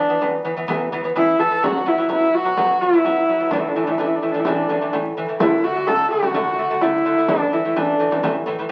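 A husky, nasal horsehead fiddle sings a proud, vast Mongolian folk melody with light vibrato and portamento over a bright, fingerpicked lute playing delicate arpeggios on double gut strings, while a frame drum struck with hard hands sits in the background of a live room, this short cut from a longer piece moving into a new section at 5.4 s and heard through wet studio reverb and the crackle of a very old 78 rpm record.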